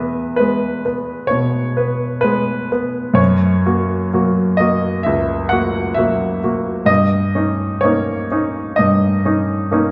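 A bright, up-front baby grand piano plays alone throughout this dreamy, nostalgic romantic nocturne at a rubato 65 BPM in 4/4, its brilliant, short-sustained tone spanning C#2 to F#5 over chords moving from E to F# to D#7/G, set in the wet reverb of a recital hall in this short cut from a longer piece.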